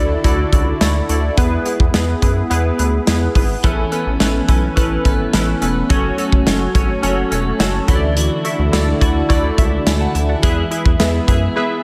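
A steady, straight 4/4 pulse at 106 BPM drives this nostalgic, uplifting slice of 1980s-style pop, cut from a longer piece, with a polished acoustic drum kit sitting up front, its tight kick and medium-tuned snare ringing in an airy studio room alongside the hi-hat. Beneath it, a rubbery square bass with a bouncy filter pluck and hollow, resonant tone anchors a progression that moves from Dadd9 through E, Aadd9 and F#m before circling back. Glassy, detuned digital keys carry the accompaniment up front with chorus, adding a short fill from 7.3 to 8.2 seconds, while a vintage, organ-like ensemble string pad holds soft sustained chords in the background through phaser and ensemble chorus. At 3.6 seconds a bright, twangy twelve-string electric guitar enters with a clean, picked riff bathed in lush chorus. Light reverb gives the mix a gentle sheen, and the groove pauses in a break at 11.6 seconds.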